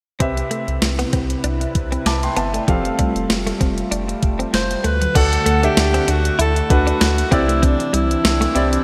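From 0.2 seconds a thumpy, overdriven 12-bit drum machine with gated reverb, a deep round analog bass, a clear baby grand piano, a detuned sawtooth pad with chorus and a picked, clean electric guitar riff touched with analog chorus and delay open a romantic, uplifting 1980s-style pop piece with a light swing, and at 4.5 seconds a bright alto saxophone with subtone, light vibrato and delay takes the melody inside a lush hall reverb and 1980s-style digital production.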